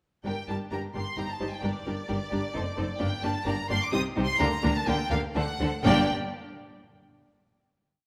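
In a quick 3/4 at 128 BPM with a rubato feel, this short, complete classical-period movement for string orchestra in G minor feels restless and dramatic. A clear, focused violin section carries the vibrato melody up front, over a second violin line and violas that play repeated notes and sustained chords. Beneath them, the cellos hold repeated bass notes in the background while the smooth double basses double the bass line, all bowed within a moderate scoring-stage reverb. The harmony passes through a diminished chord at 2.6 seconds and a D7 at 5.4 seconds before resolving to a final G minor chord at 5.9 seconds.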